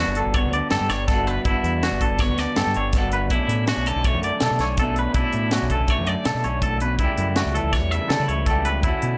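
Intricate and playful, this math rock and midwest emo excerpt moves at 162 BPM in 5/4 with a straight feel, passing through Gmaj9, Bm9 and A7/C# under light reverb. A clean, compressed twangy electric guitar sits up front with tremolo and analog delay on its arpeggios, while a dark, slightly broken-up guitar through a small old amp supplies picked accompaniment. A growling fingered bass with overdrive anchors the low end, and a crisp fusion kit with a high-tuned snare and punchy kick enters at 0.2 seconds, airy and polished in a studio room.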